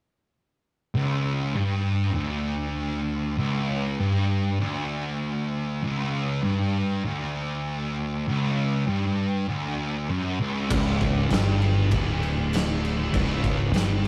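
A rough rehearsal-room recording with tube saturation and a wet small-room reverb frames this ominous, heavy stoner and doom metal excerpt at 98 BPM, where two dark, picked fuzz guitars sit up front playing a riff over a Dmaj7(no3)/C# chord from 0.9 seconds, joined at 10.7 seconds by a growling, punchy overdriven fingered bass and an oversized low-tuned drum kit with a boomy kick, fat snare and crash cymbal in a pumping, gritty big-room sound.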